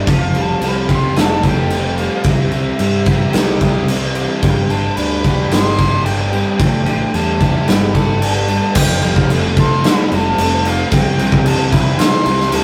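Shoegaze and dream pop rock with a dreamy, wistful air, where a big-room acoustic drum kit with a punchy kick sits up front, two picked overdriven electric guitars churn riffs in the background, a dark, round fuzz bass anchors the low end, an airy, reedy silver flute carries the melody with vibrato, and a very quiet vintage string machine holds lush sawtooth chords through a rough rehearsal-room sound in this passage cut from a longer piece.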